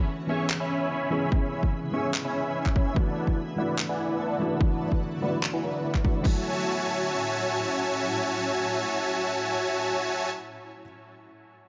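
A half-time future bass groove in 4/4 carries this lush, bittersweet fragment, where huge detuned supersaw chords sit up front with a cassette-tape tint, dub echo and a filter sweep that runs until 6.2 seconds, over a shimmering, ethereal pad and a soft, felt-muted upright piano with audible action noise, all three pumping against the beat. A hard-clipped electronic kick and a layered pop kit of crash cymbal and handclaps drive the first section, entering by 1.3 seconds and dropping out at 6.3 seconds as the harmony moves from C#m7 through E9sus4 to a closing F#m9. The mix sits in a moderate hall reverb with a softened, rolled-off top.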